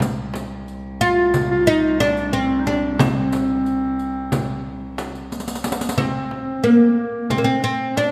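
Turkish makam ensemble music in 9/8, hypnotic and soulful, where a veiled, bowed muted cello drone and the bright jingles of a close, dry riq hold the ground until 6.0 seconds beneath a small frame drum that carries on to the end and adds a fill at 5.3 seconds, while from 1.0 seconds a woody, fretless, plectrum-plucked oud leads up front and a soft-attack clarinet traces a second line, the ensemble set in the moderate reverb of a church or concert hall in this passage cut from a longer piece.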